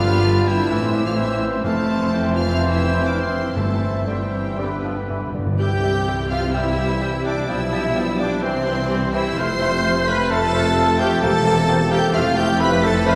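Bathed in a wet church reverb, this stormy, restless passage from a fast romantic orchestral movement pushes ahead with rubato as a lush, focused first violin section carries the melody high above the ensemble. Second lines come from a smooth-topped background violin section, a present but very quiet clarinet, a distant oboe and an airy, hollow flute ensemble, while a very quiet viola section and a roomy bassoon fill in the accompaniment. Mellow French horns and a tight trombone section hold sustained chords, a distant trumpet section adds stabs, and expressive cellos and soft-attack double basses anchor the bass. Round, close and dry timpani enter at 3.6 seconds and play a fill from 4.6 to 5.6 seconds, returning briefly at 11.2 seconds.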